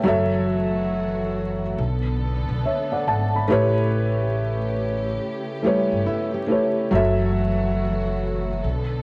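Melancholic and reflective, this slow, swung hip hop cut at 70 BPM rests on a soft, boxy felt-muted upright piano with audible action noise and a woody pizzicato upright bass, both up front, moving through F#m7, Bm7 and A7. A lush, bowed studio string section with vibrato sustains chords beneath, while a fingerpicked nylon-string guitar with tape echo adds a brief second line in the background from 5.6 to 6.9 seconds. The whole sits in a small room with moderate spring reverb, coloured by worn, warbling cassette tape, pitch drift and vinyl crackle.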